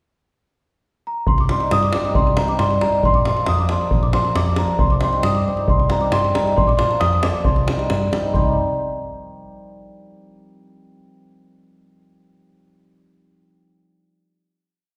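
In this short, bittersweet and restless Balkan wedding-band piece in 2/4, a celesta's bell-like, delicate melody enters at 1.1 s for a brief pickup and is built from motif-based period phrases. From 1.3 s a deep, saturated two-stick davul pattern and a round, dark hollow-body electric bass playing root and fifth on the main beats join in. At 1.5 s a shimmering, hammered cimbalom arrives up front with close-voiced off-beat chords as the harmony sways between minor and its neighbouring major chord. The whole piece rings out in a reverberant recital hall before settling on a final chord at 8.3 s.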